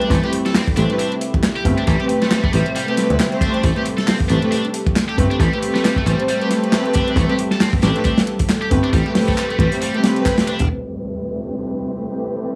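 Swaggering and energetic, this breakbeat cut from a longer piece rides a swung sixteenth-note groove over an Am9 chord. A crunchy, saturated breakbeat kit sits up front with a punchy kick and medium-tuned snare, its top rolled off for a dark, gritty feel, while a layered electronic house kit adds handclaps and hi-hat beneath it. A growly picked electric bass with tube saturation anchors the low end, and a high-gain, double-tracked guitar plays a distorted riff through overdrive, a low-pass filter and tape echo. Close, woody symphonic strings punch out bowed stabs with vibrato and tape echo, and a swirling, detuned sawtooth pad with phaser, chorus and sidechain pumping breathes in the background. The band hits an accent at 10.3 seconds, both drum kits and the bass drop out at 10.7 seconds as a filter sweep begins, and an electronic downlifter enters at 10.8 seconds, all framed by moderate studio reverb, small-room ambience and vinyl crackle.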